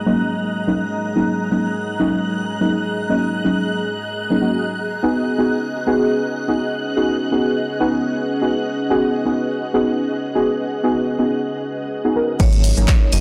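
Deep house at 124 BPM with a moody, hypnotic pull, this excerpt opens on a dark, detuned analog pad, a soft, full-bodied chord stab with dub echo and a filter sweep, an ethereal airy pad with tremolo and built-in reverb, and a shimmering vintage string machine of violins, all pumping against the sidechain over G#9sus4 and C#9sus4 chords, until at 12.4 s an up-front punchy electronic kick, a sine sub bass with octave and tube saturation, a tape-toned analog drum machine with crash, handclaps, hi-hat and shaker, a barely audible acoustic kit played with bundle sticks, and a metallic, ringing vibraphone with hard mallets drop in under a wet echo-chamber reverb.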